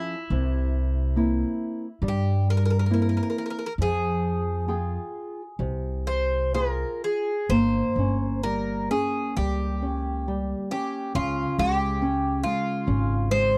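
A fado-style ballad cut from a longer piece, passionate and mournful, moving in a rubato 4/4 at roughly 62-71 BPM. A picked Greek bouzouki carries the melody between E4 and C5, its double strings and some octave-doubled courses giving a metallic ring. Beneath it a nylon-string guitar, dark and small in tone, fingerpicks the accompaniment across a broad span from C3 to G5. An upright bass enters at 0.3 s, played pizzicato on steel strings with a growly, woody sound, sitting slightly louder than the other two. The harmony passes from C7 to Fmadd9, then shifts at 7.5 s into a new section over Gdim before settling on Db. All three instruments sit up front in a dry, close 1970s-style studio sound touched with light reverb.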